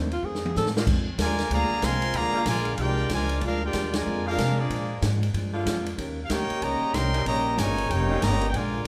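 A dark, clean hollow-body jazz guitar and a woody, growly pizzicato upright bass open this energetic big band swing excerpt, while the drum kit, set back in a roomy studio with dark cymbals and a boomy kick, plays a fill. A breathy alto saxophone with scooped notes and a soft attack slips in for the briefest moment before the ensemble takes over. From 0.8 seconds a tight saxophone section holds sustained chords in the background. At 1.2 seconds a brilliant trumpet section carries the melody up front with light vibrato, as a bucket-muted, veiled trombone section plays a loose second line. The harmony moves from F7 through Bb7 to Eb7 over a swung feel, with a band accent landing at 3.9 seconds, and a moderate reverb from a large studio surrounds the band.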